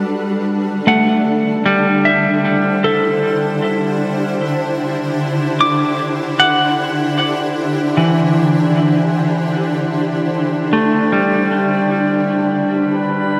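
Bathed in a lush hall reverb, this serene ambient excerpt at 76 BPM sets a shimmering, ethereal pad of sustained chords, moving from D7sus4 to G, beneath a bright, clean semi-hollow electric guitar that enters at 0.9 seconds with picked arpeggios colored by warbly pitch drift and diffuse delay, before a barely audible, ominous rumbling drone surfaces at 12.7 seconds and a glassy, drifting harmonics texture joins at 12.8 seconds.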